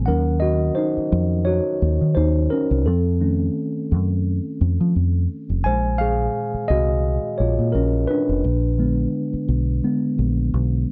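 A worn, slightly out-of-tune tine electric piano takes the lead throughout this sultry, introspective R&B and neo-soul excerpt at 86 BPM with a light sixteenth-note swing, moving through Ebm7, F7b13, Bbm9 and Bb7b9 over a dark, round, foam-muted fingered dub bass, both parts sitting up front in a dry, close 1970s-style studio sound.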